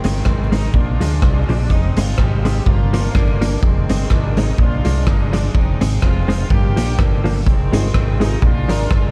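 Ska with a driving, energetic lift, this short cut from a longer piece sets a loose, distant horn section carrying the melody through dub echo over a clean, tremolo-shaded semi-hollow guitar, a round, punchy fingered bass, and a gritty, saturated garage drum kit of hi-hat, kick and rim click sitting up front, while a woody, boxy upright piano slips in stabs at 7.7 seconds, all wrapped in a dark production with light reverb and vinyl crackle.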